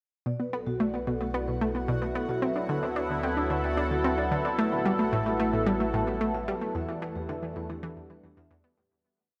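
A huge, wet reverb with a long tail of 7.1 seconds surrounds this brief piece of ambient, sequencer-driven space music, lending it a cosmic, hypnotic air in a straight 4/4 pulse. Up front, a round, detuned analog pluck with a fast attack and short decay cycles a six-step riff that drifts against the bar, while a bright, resonant pad swells slowly through sustained chords moving from Bm7 to Dadd9, Asus2 and Em7. Further back, a mellow vibraphone played with soft mallets rings with a medium motor vibrato, spinning a twelve-step arpeggio through tape echo. A warbling, vintage analog drone enters at 0.8 seconds to hold the root in the low register, and a bubbling, stepped-filter texture sustains a high note with its own reverb. The whole piece fades out from 6.0 seconds to its close at 8.9 seconds.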